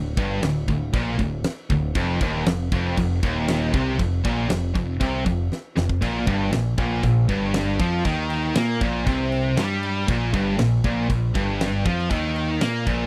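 Heavy metal at 118 BPM in a straight 4/4, heavy and relentless, with three picked, distorted electric guitars riffing in the background over D5, F5 and Bb5 chords: one warm, one scooped and high-gain, and one tight and double-tracked. A growling, overdriven picked bass runs beneath them, while an up-front acoustic drum kit with a fat snare, tight kick and crash cymbal drives the groove and breaks into a fill at 5.5 seconds. The sound is a dry, close 1970s-style studio recording, with the drums carrying a bright stone-room character, and the clip is cut from a longer piece.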